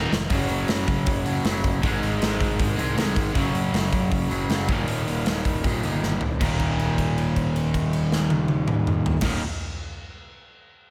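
A straight 4/4 pulse at 158 BPM drives this rowdy, energetic punk rock excerpt. A big rock drum kit sits up front with a punchy kick, bright cymbals and a medium-tuned snare, opening with a fill and firing another at 6.0 seconds. Two overdriven, picked electric guitars play the riff over Gb5, Ab and Eb chords before the harmony settles on Eb5, with a note held from 6.4 seconds: a cranked stack guitar with slapback echo and a hollow-bodied semi-hollow guitar, while a fuzzed, picked electric bass growls in the background.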